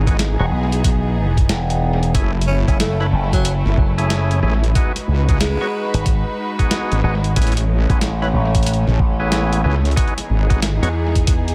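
A heavy, detuned wobble bass anchors this funky, swaggering glitch hop excerpt at 92 BPM with a 16th-note swing, joined by a punchy envelope-filtered slap bass, a thumpy pitched-down kick, a gritty boom bap kit of hi-hat and snare drenched in dub echo, stabs from an overdriven tonewheel organ with key click and sampler grit, a raspy growling tenor saxophone solo from 2.5 to 6.1 seconds, and a dark, intimate chamber string section holding pumping chords over a progression climbing from Emaj7 through F#m7 and G#m7 to Amaj7 before returning to Emaj7, all in a dry, echo-heavy mix.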